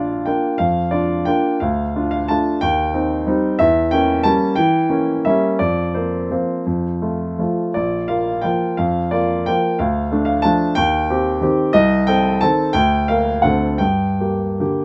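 Classical piano waltz in 3/4, playful and graceful, with a solo baby grand piano played with free rubato at 148-196 BPM, its natural, up-front tone caught by close, detailed microphones in a nearly dry room and tuned to A4 = 437 Hz, moving from Bb major to a turn into G minor at 11.7 s in this short fragment of a longer piece.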